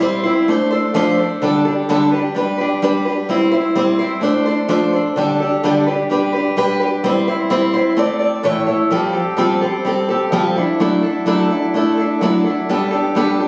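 A picked old ladder-braced acoustic guitar plays alone, dark and boxy with audible finger squeak and a touch of analog delay, sitting up front in this jangly rock excerpt at 128 BPM, cycling through F6, Dsus4, G and C/G before shifting at 8.9 seconds to Fadd9, Dadd9/F# and Gadd9, all captured on a phone in the room with light studio reverb and compression.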